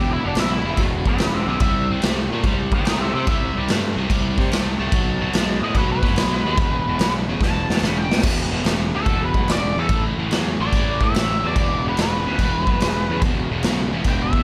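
Brooding and heavy, this short cut from a longer piece is blues rock power trio with a southern rock edge, driving at 145 BPM in E minor with a swung eighth-note feel. An octave-fuzz lead guitar solos throughout, its dark, distorted tone coloured by wah, distortion and slapback echo as it ranges from D4 to B5. Beneath it, a crunchy, double-tracked rhythm guitar plays a picked riff up front, while a fingered electric bass adds a growly, overdriven fuzz low end. The raw garage drum kit enters at 0.4 seconds with punchy kick, medium-tuned snare and crash cymbal, its saturated, gritty sound set in a bright stone room with a pumping feel and a rolled-off top. A drum fill at 7.4 seconds leads into the second pass of the riff, and the chords move from Em through C5, a third-less B7 and E5 to A5 and back to E5, all under a light reverb.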